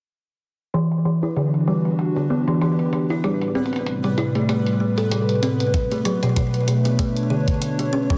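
Melancholic and glitchy, this short cut from a longer IDM piece sits in E minor at 96 BPM in 4/4, with a light swing on the 16ths. A hollow, airy pad with a flute-like, detuned tone carries sustained chords up front from 0.7 seconds, moving through Em9, Am9 and Bm9, its chorus-thickened sound breathing with sidechain pumping. A woody kalimba plays arpeggios alongside it, its soft fingertip plucks filtered and trailed by delay, while gritty, pitched-up electronic hi-hats sit low in the mix under a low-pass filter and studio reverb. A mellow, tempo-synced pulsing texture joins at 1.2 seconds, detuned in unison and bathed in chorus and its own reverb. A compressed, thumpy kick arrives up front at 5.7 seconds, and filter sweeps run across the drums, pad and kalimba throughout, all held in moderate plate reverb within a dense, heavily limited modern master.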